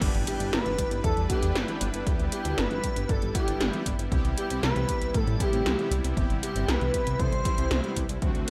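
A straight 4/4 pulse at 117 BPM drives this uplifting, romantic synthwave piece in G major, built on a punchy electronic kick, tape-warm 80s pad drums with a gated snare and metallic hats, and a glossy chorused synth bass, with the harmony moving from G6 to Cmaj7 at 4.1 seconds. A soft supersaw sits in the background holding smooth, detuned chords with sidechain pumping, next to bold analog synth brass stabs, a very quiet, dark electric guitar at the edge of break-up playing arpeggios, and a faint electronic impact that sounds from 0.1 to 2.1 seconds. From 0.3 seconds an expressive synth lead carries the melody with lush chorus, vibrato and digital delay, alongside an airy, dreamy second lead with phaser, in a bright 1980s-style digital production with light reverb.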